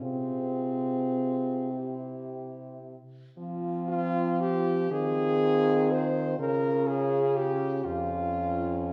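Four French horns sound together from the first moment, opening a melancholic, elegiac classical fragment for horn quartet in a lilting compound metre, shaped with a free, rubato feel. Up front, a warm-toned horn carries the lyrical melody in its middle register, while a second horn with a light vibrato anchors the bass line far beneath it. Two darker horns fill the inner voices with soft attacks and a smooth top: one plays a close second line set in the background, and the other supplies accompaniment just below. The harmony rests on an F minor chord over C at first, settles onto root-position F minor at 3.4 seconds, and moves to D-flat at 6.4 seconds. A moderate recital-hall reverberation in a church or concert-hall space gives the ensemble a gentle, lingering bloom.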